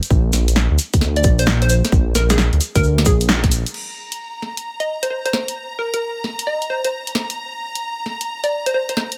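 A dark, detuned sawtooth bass rumbles up front between Bb1 and D2 over a Bb7 chord, anchoring this soulful, late-night two-step UK garage excerpt at 132 BPM in 4/4 with a strong 16th-note swing. A tight, layered electronic kick sits alongside it, while a punchy analog drum machine supplies crash, hi-hat and snare, and a grainy vintage tube shaker stays in the background. A hollow, bouncy square-wave pluck enters at 1.2 s, its detuned filter tone dressed in lush chorus and tape echo between Ab4 and Eb5. After a band accent at 3.3 s, the kick drops out at 3.5 s, the bass at 3.6 s and the shaker at 3.7 s, where the harmony falls away. A bright, focused symphonic violin section then holds Bb5 with vibrato and sidechain pumping, as the pluck and drum machine carry on. The mix is dry, with the drums re-recorded in a small room.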